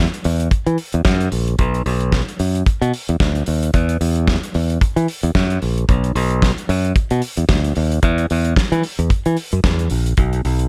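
The recording is close and dry, with both parts up front and only the drum kit carrying a gated reverb. This is a short cut from a longer disco piece at 112 BPM in 4/4, driving and glamorous, with a light 56% swing on the sixteenths and tuning set to A4 = 441 Hz. A bright, growly fingered electric bass opens at 0.0 s, ranging from A#1 to E3 with a direct, electric edge. A damped 70s acoustic kit joins at 0.1 s, playing hi-hat, a tight kick and a fat snare with an airy, polished finish. The two parts carry the whole passage, a single section that runs to 10.7 s.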